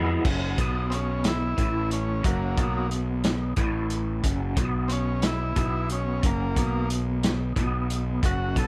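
Hazy and hypnotic, this psychedelic rock fragment in 6/8 opens on a drum fill as a bright, twangy electric guitar riff through a small old amp and rotary speaker rides over a round, overdriven fuzz bass, with a gritty, up-front breakbeat kit of dark cymbals and tight kick entering at 0.2 seconds, before a buzzy vintage combo organ with light vibrato and analog delay takes a solo from 0.9 seconds, all set in light reverb.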